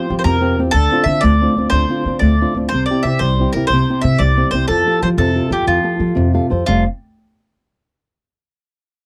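A mandolin and a fingerpicked nylon-string guitar open this short clip of a lively, sunny Italian folk serenade, with the upright bass joining at 0.1 seconds. Set in F major and 6/8 at 122 BPM in dotted quarters, the tune moves with a straight, lilting feel through Fsus2, Dm7, C and Fadd9. The picked mandolin carries the melody up front with a woody, double-string shimmer, while the guitar's small, fresh-stringed sound fills out the accompaniment close beside it. Underneath, the pizzicato upright bass adds a dark, steel-strung footing. Near the end, at 6.2 seconds, the guitar slips in a brief fill. The dry, close sound recalls a 1970s studio, placing the trio intimately near the listener.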